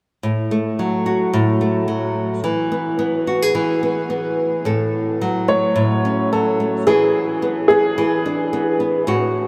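A fingerpicked nylon-string guitar opens this short pop fragment, sounding small and up front as it moves through F#m/A and E in A major at 109 BPM with a light swing. At 5.5 seconds a clear, woody upright piano enters with a brief melody, slightly detuned, with long sustain and a tape echo, over A6 and E7 chords. The whole piece sits in a vast, echoing space with a huge ambient reverb, giving its heartfelt, sunny mood a drifting, spacious glow.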